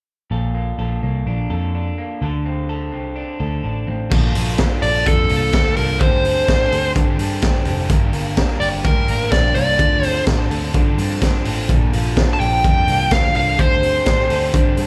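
A dark, overdriven lead guitar sits up front carrying the melody from 4.8 s in this excerpt of nostalgic, youthful jangly indie pop at 126 BPM in Bb major, its picked line ringing with slapback echo and delay. Beneath it are a bright, twangy, lo-fi arpeggiated guitar through a small old amp kept in the background and a round, foam-muted vintage bass. From 4.1 s a crunchy rhythm guitar and a raw garage drum kit join, the kit's punchy kick, high-tuned snare, hi-hat and crash sounding gritty and saturated. The chords move through Bbmaj7, D7sus4, Gm and Dm7, and the band comes across like a live club gig heard through the venue's PA, bathed in club reverb.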